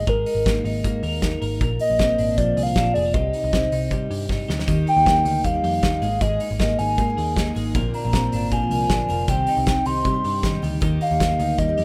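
A hollow, woody clarinet-like synth lead with chorus sings the melody up front over bright, twangy twelve-string electric guitar arpeggios and a dark, round muted bass, with a loose indie drum kit joining at 0.1 seconds, a drum fill at 4.3 seconds and a bright picked steel-string acoustic guitar arriving in the background at 4.7 seconds, all cycling through Absus2, Bbadd9, Cm and Eb in a nostalgic, breezy slice of jangly indie pop with a rough home-demo sound and light reverb.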